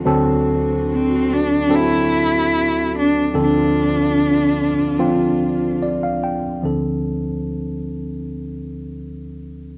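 A home cassette recording with a moderate booth ambience frames this short excerpt of a reflective, heartbroken acoustic folk-pop ballad in D minor, moving at a straight 73 BPM in 4/4. A worn, slightly out-of-tune tine electric piano sits up front throughout, its clean tone heard through a combo amp as it carries the accompaniment across a broad span from D2 to G5. Behind it, a chamber string section plays soft-attacked, sul tasto sustained chords with light vibrato, a gentle bed that holds until 6.6 seconds. A single bowed cello takes the melody from 0.9 to 5.8 seconds, smooth and even with a rich vibrato, placed up front and tinted by cassette tape. The harmony moves from D7 to Dm7, and once the strings drop out the electric piano carries the closing passage alone until the cut at 9.8 seconds.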